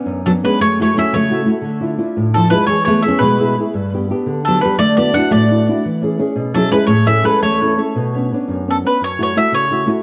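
A lilting 6/8 sway with a loose, rubato feel carries this sunny, lively Italian serenade, cut from a longer piece. A nylon-string guitar fingerpicks the accompaniment from the start, its full-bodied, deep classical tone ringing through the whole passage with the occasional finger squeak. At 0.3 seconds a bowl-back mandolin takes the melody, bright and picked on its doubled strings, sitting up front with a touch of tape echo. A second nylon-string guitar enters at the same moment with a small, thumb-plucked line, also close and up front, before dropping out at 7.8 seconds. The harmony drifts through colorful chords such as Bmadd9, Dmadd9 and E6 before returning to the opening pair as the phrase begins again at 8.0 seconds. The sound is dry and intimate, a close 1970s-style studio recording in a small room.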